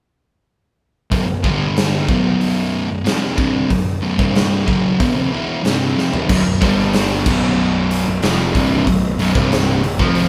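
Recorded live in one room with light reverb, this ominous, heavy stoner and doom metal excerpt opens at 1.1 seconds with a distorted, up-front fuzz guitar riff, a darker, thick fuzz guitar behind it, and a big acoustic rock kit in a bright stone room, with bright cymbals, a medium-tuned snare and a punchy kick, grinding between B5 and G5. After a drum fill ending at 6.3 seconds, a dark, double-tracked overdriven electric guitar and a growly, direct-and-amped fuzz bass join the riff, thickening the low end.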